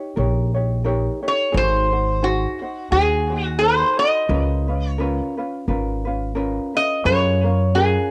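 Hawaiian music at a relaxed, languid 87 BPM with a gentle swing, heard here as a short cut from a longer piece recorded at home on cassette in a small booth. A light, mellow ukulele, thumb-plucked and carrying a faint cassette-tape character, plays the accompaniment through chords moving from D#7 to G#7, C#13 and F#maj9, while a woody pizzicato upright bass sits up front from 0.2 seconds. At 1.3 seconds a metallic, nasal resonator slide guitar, played with fingerpicks, takes the melody and leads the mix.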